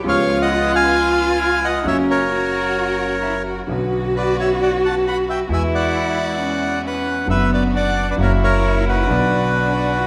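A reedy bandoneon carries the melody up front in this dramatic, melancholic B minor tango, taken with a rubato feel around 133 BPM and cut from a longer piece. Beneath it, a distant solo cello sings a bowed second line with vibrato and portamento, while a vintage-sounding concert grand with deep, smooth bass supplies the accompaniment and a woody, pizzicato upright bass anchors the low end. A rich symphonic string section adds biting, intense stabs in the background, all set in a wet scoring-stage reverb as the harmony moves from C#7 through Bmadd9 and Eadd9 to rest on Bm.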